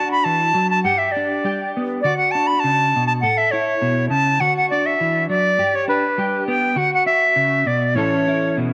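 Highlife with a sunny, joyful spirit and a lightly swung sixteenth-note feel, cut from a longer piece. A bright, reedy silver concert flute carries the melody up front with vibrato and a soft attack, its metallic purity softened by rolled-off highs, while a dark, clean picked electric guitar, treated with ensemble chorus, provides accompaniment across the full 8.7 seconds. Light reverb surrounds the pair as the harmony cycles among D, G and A.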